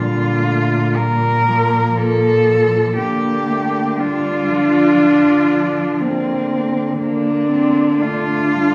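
Warm and lyrical, this rubato classical excerpt for four muted cellos moves at 59 BPM in Bb major, with a veiled, con sordino melody cello held up front with light vibrato over a smooth-topped second line, a dark accompaniment and a bowed bass, all heard from further back in a recital hall with a wet 1.5-second reverb.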